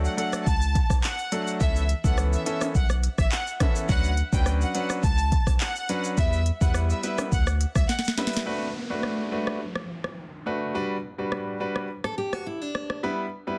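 A straight 4/4 dancehall groove at 105 BPM drives this hypnotic, tough B minor excerpt, built on an electronic afro-pop drum kit with a deep kick, sharp snare touched by soft clipping, crisp hats, handclaps, rim click and shaker sitting up front, while tube shaker and timbales with hard hands add a vintage, band-limited layer in the background until 8.5 seconds. A thick, saturated sub bass with a fast attack holds down the low end through the opening, and a brilliant grand piano, intimate enough that its action noise is audible, carries the chords with long sustain and sidechain pumping, moving from D through Aadd9/C# and Bmadd9/D to Em. Above it, a lush studio violin section plays the melody with smooth vibrato and tape echo, ending at 8.3 seconds as a drum fill leads into the second section. There the harmony shifts to Bm7 and Gmaj7 as an electronic downlifter sweeps in, and a fingerpicked steel-string acoustic guitar with fresh strings adds brief arpeggios from 12.0 seconds. 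Studio reverb surrounds the parts, all shaped by a dense, heavily limited modern master.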